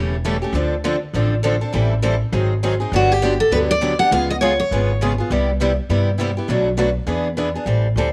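Two picked steel-string acoustic guitars and a woody, thumpy gut-string upright bass open this bittersweet, fiery excerpt of swinging jazz manouche. A full-bodied dreadnought with audible finger squeak and a boxy parlour guitar carry the accompaniment through chords like Dm7, G#7, Gmaj7 and C#7, with the bass up front. A bright third guitar with fresh strings plays a short melody from 3.0 to 5.1 seconds, all set in a light studio reverb.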